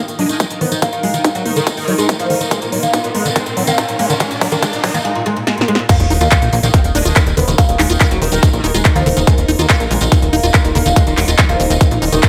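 This intense, alien psychedelic trance excerpt opens with a woody, plectrum-plucked oud melody treated with phaser, tape echo, a low-pass filter and sidechain pumping, over a squelchy, resonant acid bass riff whose filter sweeps through the build-up, while a very quiet metallic wobble bass appears in short bursts. A swarming, detuned drone holds tense chords in the background as a layered big-room kit with crisp hats, a punchy electronic kick, a distant, jingly tambourine, drum fills and a riser drive the build. The drop lands at 5.9 seconds with an impact and sub drop, and a funky sawtooth analog bass enters up front at 6.0 seconds, set in a light reverb.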